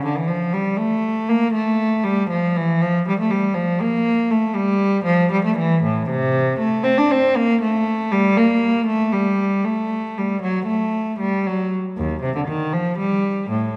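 A lone bowed cello opens this introspective, flowing baroque-style suite movement, played in period style at a rubato 79 BPM in 12/8, counted in dotted quarters. The gut-string tone is dark and reedy with a smooth top, carrying light vibrato across a range from Eb2 to D4. The single player sits up front in a wet concert hall reverb for the full 13.8 seconds of this fragment of a longer piece.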